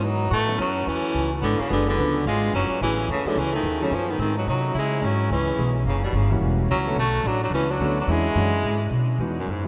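A clear, up-front baritone saxophone carries the melody with vibrato and scooped notes in this playful, warm swing jazz excerpt in A major at 216 BPM, joined by a distant, roomy tenor saxophone on a second line, a woody pizzicato upright bass, and an intimate baby grand piano whose action noise can be heard as it accompanies in the background from 0.5 seconds, all set in a vast, echoing space with a long, wet reverb.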